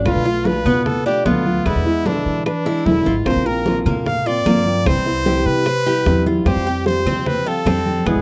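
A brilliant, close-miked trumpet sits up front, carrying the solo melody in this danceable passage of Cuban son and guajira, cut from a longer piece. Beneath it, a fingerpicked flamenco guitar with audible finger squeak supplies the accompaniment, while a bright, metallic Cuban tres picks arpeggios on its double strings, some of them octave-doubled. A pizzicato upright bass with gut strings gives a dark, thumpy, woody foundation. The percussion pairs thick-skinned, medium-tuned congas, heard from a distance in a large room, with tight, high-tuned bongos played with hard hands and claves tucked in the background, and a drum fill breaks in at 2.7 seconds. The harmony moves from Bm7b5 through E7, Bbsus2 and Cmaj7 to Fsus2, in a close, dry 1970s-style studio sound with light reverb.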